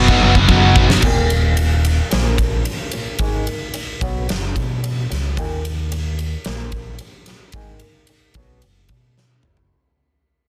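This dark, cathartic quiet-loud alternative rock excerpt opens on a one-second burst of three guitars playing a riff together: a compressed distorted guitar sitting in the background, a warm fuzz guitar and a double-tracked, scooped high-gain guitar. A huge acoustic arena drum kit enters at 0.1 seconds with a fill, placed up front with bright cymbals, a punchy kick, a medium-tuned snare and toms ringing in a hall-like space. An overdriven, amped fingered electric bass holds the low end from the start to the close. At 1.0 seconds the heavy guitars stop and a fingerpicked old ladder-braced acoustic guitar takes over with woody, boxy arpeggios on old strings, sitting low in the mix over a dark chord cycle. The passage gradually fades out, with another drum fill near the end, and the dense, heavily limited master carries little reverb.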